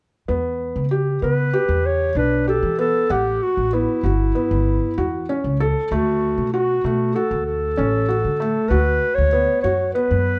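A dark, soft-attacked clarinet carries a classical-style solo melody from 1.2 s. Below it, a felt-muted upright piano with audible action noise spins intimate arpeggios, and a woody pizzicato upright bass holds the low end, both starting at 0.3 s. This hypnotic, urgent slice of contemporary chamber music in 9/8 cycles through Em, A13, D and a rootless Gmaj7/D, with light reverb and a dark, warm production.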